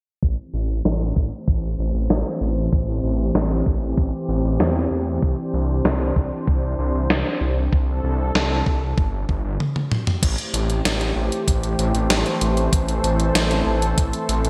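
Moody, cinematic synthwave excerpt at 96 BPM in A minor, where a smooth, warbling analog pad holds sustained Am7 and Cadd9 chords with lush chorus over a thick, detuned sawtooth bass, both pumping with sidechain, as a thumpy, tape-toned electronic kick and a gated 80s digital drum machine with gated-reverb snare, hi-hat, toms and crash sit up front in a large room, a filter sweep runs across drums, bass and pad through 10.2 seconds while a drum fill from 9.6 to 10.2 seconds opens the next section in bright 1980s-style digital ambience.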